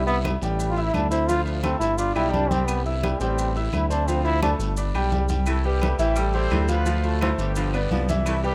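A bright, distant trombone carries the melody until 4.5 s in this joyful, sunny salsa fragment, over a smooth gliding synth bass up front and a brilliant concert grand piano, with ringing congas, grainy maracas, agogo bells and timbales, woody claves and a raspy guiro tucked in the background, before a clear horn section with tape echo and a gritty baritone saxophone enter at 5.5 s, all in a rough home-demo mix with light small-room reverb.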